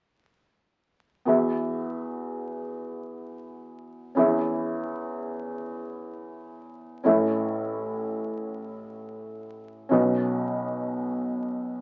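A felt-muted upright piano carries this brief folk passage, its tone soft, mellow and intimate, with short sustain and a close, up-front presence. Played in free time in E major, it sounds tender and hopeful, moving through Eadd9, C#m/E, A and Badd9 between 1.3 and 11.8 seconds. The piano spans a broad register from A1 to E5, filling the role of accompaniment even though it is the only part heard. A wet club reverb gives the sound a small-room bloom, while the crackle of a very old 78 rpm record lends it an aged, nostalgic surface. Cut from a longer piece, the fragment feels like a gentle reflection caught mid-thought.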